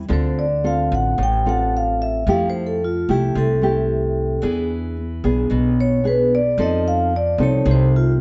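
A straight 4/4 bossa nova pulse carries this melancholic, intimate fragment of a longer piece, with a warm, thumb-plucked nylon-string guitar comping and a woody, thumpy upright bass on gut strings holding down the low end. Up front, a ringing, metallic vibraphone played with medium mallets and its motor off takes a solo from the very start over chords moving from Dm7 through Fmaj9 and E7 to F7. The trio sounds like a band playing live together in a stone room with a moderate reverb, and the top end rolls off above about 7.7 kHz.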